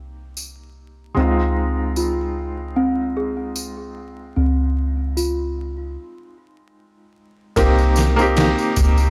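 This smoky, melancholic trip hop excerpt moves at a slow 75 BPM in 4/4 with a light sixteenth-note swing, drifting from Cm7 to Dbmaj7 and back to Cm7. A felt-muted upright piano sits up front with a mellow, intimate tone and audible action noise, colored by tremolo and tape echo, while a soft 808-style bass adds a deep, round, sine-like low end that decays after each fast attack. A close, dry tambourine joins almost at once, and from 1.2 seconds a small celesta spins bell-like, delicate arpeggios through a delay. After a break beginning at 6.0 seconds, a sampler-style drum kit enters at 7.6 seconds with a thumpy kick, a medium-tuned snare and ride cymbal, its sound compressed, pitched down and gritty. Small room ambience and vinyl crackle wrap the whole fragment in a dusty, late-night haze.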